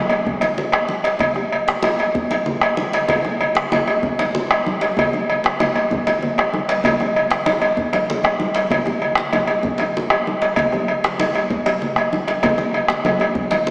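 West African traditional drum ensemble in a powerful, festive 12/8 at 128 BPM, cut from a longer piece, with a metallic, up-front cowbell sitting loudest over a deep djembe, a round close bombo and bright, thin-skinned congas, all washed in a wet concert-hall reverb with a small-speaker sound.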